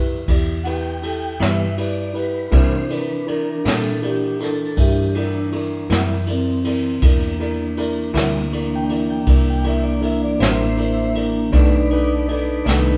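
A flute-like tonewheel organ takes the solo from the first moment of this brooding, soulful slow blues in 12/8 at 53 BPM, its soft tone turning through a slow rotary speaker over a woody, slightly detuned upright piano and a round, foam-muted electric bass, with brushed drums entering up front at 0.3 seconds. At 1.4 seconds a slightly broken-up electric guitar joins through a small old amp with tremolo, as the harmony moves from Em to C7 and lands on B7#9 near the end. The band plays live together in a stone room with moderate reverb, the kick boomy and the cymbals dark, in a passage cut from a longer piece.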